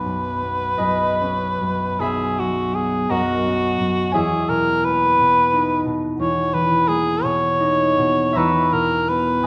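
A warm cor anglais sings the melody up front with a light vibrato, in a pastoral, dreamy impressionist duo that unfolds in a rubato 12/8 at 48-60 BPM by the dotted quarter. Beside it, a thumb-plucked concert harp lets its ringing tones spread across a broad range in accompaniment, moving from Badd9 to Emaj7#11 at 4.1 seconds. Both play throughout this brief cut from a longer piece, set in a reverberant recital hall.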